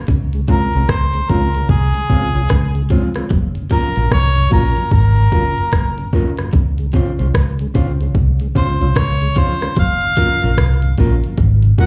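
Heard through a club PA with a touch of venue reverb, this laid-back roots reggae fragment of a longer piece features a clear harmonica soloing with light vibrato over a dark, foam-muted, up-front fingered bass, a soft-kicked electronic drum kit with clicky hats and rim clicks, a mellow fingered electric guitar accompaniment, a bright, twangy picked guitar playing arpeggios in the background until 10.3 s, and a flute-like tonewheel organ with key click and slow rotary speaker, with the harmonica, both guitars and the organ each carrying slapback echo.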